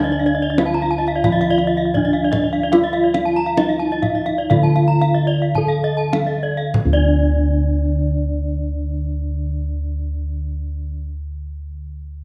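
Three bronze metallophones and a set of bossed gongs sound together from the opening moment of this Balinese gamelan excerpt, their tuned pairs producing a shimmering, hypnotic beating. The lead metallophone carries the melody in a dark, smooth voice struck with a wooden mallet. Above it, two higher metallophones spin arpeggios with horn mallets, one bright and forward in the mid-range, the other bright and airy. Beneath them, the round, up-front gongs hold the bass with a boxy, close character. A kendang joins at 0.3 seconds with a tight, vintage, band-limited tone and drops out at 7.3 seconds. In straight 4/4 time, the tempo moves between 47 and 101 BPM, slowing through the first 6.7 seconds before a new section begins, all set in a moderate concert-hall reverb.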